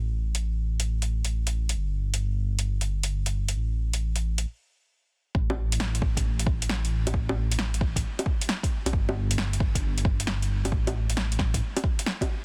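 Future garage with a nocturnal, wistful mood and a swung 4/4 groove, this short cut from a longer piece opens on a rumbling, detuned saw bass that pumps under sidechain compression, joined almost at once by an overdriven deep house kit of bongos, metallic hi-hats and a punchy snare. After a brief stop, an up-front, overdriven electronic kick drum enters at 5.3 seconds to drive the second section. The dense, heavily limited mix sits in a digital ambience.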